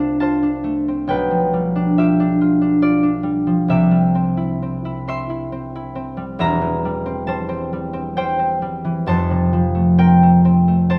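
In a loose, rubato 3/4 at about 68 BPM, this serene classical fragment for solo concert harp drifts through fingerpicked, ringing chords from E1 up to C6, moving from C major toward F major at 6.4 s, while a wet stone-room reverb gives the peaceful 11-second passage a gently distant glow.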